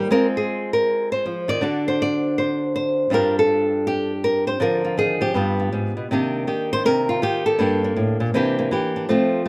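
Solo jazz at 161 BPM in 4/4 with a swung eighth-note feel, smoky and late-night in mood, moving from G minor into C minor at 6.1 seconds. A lone flamenco guitar carries everything for the brief 9.5-second excerpt, fingerpicked up front with a bright, fresh-stringed acoustic sound spanning G2 to D5, touched by light reverb. Its harmony runs through colorful changes like Ab6, Ddim and G7 before settling into richer Cm9, Gmadd9 and C9 voicings, and the passage is cut from a longer piece.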